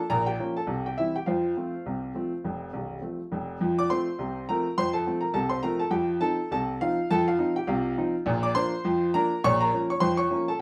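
Ragtime piano in F major at 103 BPM in 2/4 with a light swing on the sixteenths, this jaunty, cheerful fragment from a longer piece features a clear, natural, up-front baby grand playing solo across a span from C1 to D6, moving through Bbm, C, F, F7 and Bb in a short, wet studio reverb, with the opening phrase returning at 3.6 seconds.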